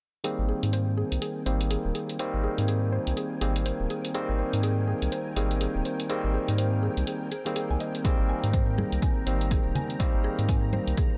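A silky, gritty string machine, woody FM pluck arpeggios with tape echo, barky low-passed electric piano stabs and a tape-warm electronic hi-hat open this soulful deep house excerpt at 123 BPM in Ab major on an Abmaj9 chord with a 59% sixteenth-note swing, joined almost at once by a round, nasal analog bass pumping under the sidechain as filter sweeps move through the bass and the arpeggio, before a punchy, up-front electronic kick lands at 8.0 s and bright, hard-handed, close congas arrive at 8.8 s, within light digital reverb.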